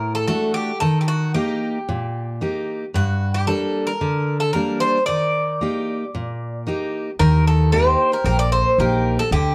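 A metallic, up-front Greek bouzouki carries the melody over a full-bodied picked steel-string acoustic guitar with audible finger squeak in this brooding Greek folk excerpt at 113 BPM, moving through D, Eb and Gm in light reverb, until at 7.2 seconds a woody pizzicato upright bass and a bright bowl-back mandolin, sitting in the background on a second line, join the band.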